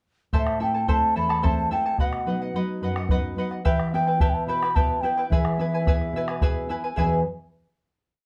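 In a straight 6/8, this brief, complete Andean folk piece has an earthy, festive mood: a round bombo beats out an evenly spread pattern, a dark, full-bodied nylon-string guitar sits up front with thumb-plucked oompah bass notes and chord figures, a charango adds shimmering double-string strumming in open chord shapes, and from 0.4 seconds a mellow large quena carries an airy, soft-attacked, motif-based melody in period phrases, all under light reverb before a final chord at 7.0 seconds.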